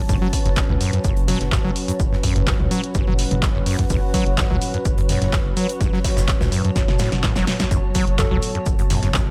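A punchy analog kick sits up front at 126 BPM in this hypnotic, raw acid house excerpt in F# minor, driving a squelchy, resonant, saturated sawtooth acid riff with tape grit and overdrive over a deep, round sub bass, while a big-room analog drum machine adds claps, hats, snare and toms, a polished gated 80s kit with airy shaker sits in the background, a drum fill arrives at 6.8 seconds, detuned chorused pad chords and a blurred, evolving granular cloud breathe with sidechain pumping, and a gentle, keys-like FM lead with tape echo touches a single A4 at 8.2 seconds in a dry mix.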